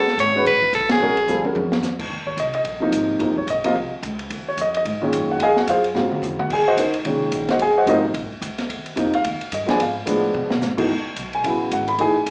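This live club recording comes through the venue's PA with a small-speaker sound and moderate room reverb, a brief fragment cut from a longer modal jazz performance in Eb dorian. At a fast 218 BPM in swung 4/4, the mood is intense and searching. An edgy, forceful soprano saxophone with vibrato and slapback echo sits up front for its short phrase, which ends at 1.4 s, just after a band accent at 0.9 s. A woody, polished upright piano, also carrying slapback echo, stays present throughout, moving from Aadd9/F# and A#7alt into Ebm69, Fm7/Eb, Abdim7 and F#m11. Beneath it, a thumpy pizzicato upright bass sits low in the mix, and a dark, smooth acoustic drum kit with a boomy kick and rolled-off top adds fills, one of them at 6.0 s.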